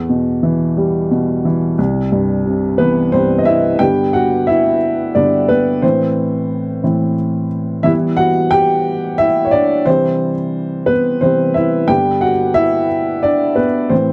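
A dark, woody upright piano plays alone throughout this swaying, romantic pop fragment in a lilting 6/8, moving through chords from Em and C to G and Am, its intimate tone carrying audible action noise and long sustain, sitting up front in a dry, close 1970s-style studio sound.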